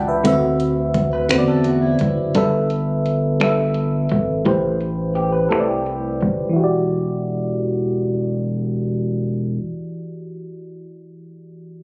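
Yearning and sultry, this slow R&B piece in six-eight sits at 57 BPM in E minor, cut from a longer work. A mellow FM electric piano sits up front from the start, its fast attack decaying over a noise layer as it carries the chords, moving from D13 through G69 and Am7 before settling on Em9 when a second section arrives at 6.6 seconds. Beneath it, a round analog bass with a deep, sine-like tone holds the low end until 9.6 seconds, while an electronic drum kit of finger snaps, dark hats and a knocking, overdriven kick comes in at 0.2 seconds and drops out at 6.4 seconds. An electric guitar at the edge of break-up enters at 1.1 seconds with a picked, compressed second line bathed in lush chorus. A filter sweep runs across the opening section, and the whole is heard through an echo-chamber reverb and club ambience, captured on a phone in the room with compression and a low-pass filter that dull the top end.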